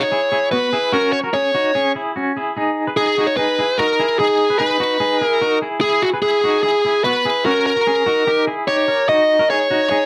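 A bluesy overdriven lead guitar carries the melody from the first moment, distorted and picked with a slapback echo, while a bright, twangy clean electric guitar plays fingered arpeggios through a tremolo, both up front for the full 10.1 seconds. This bittersweet, wistful indie pop fragment in G# minor moves at 147 BPM in a straight 4/4, cycling through E, F#, G#m and D# before settling on D#m7 at 9.1 seconds. The dry, close 1970s-style studio sound carries light reverb and a layer of vinyl crackle.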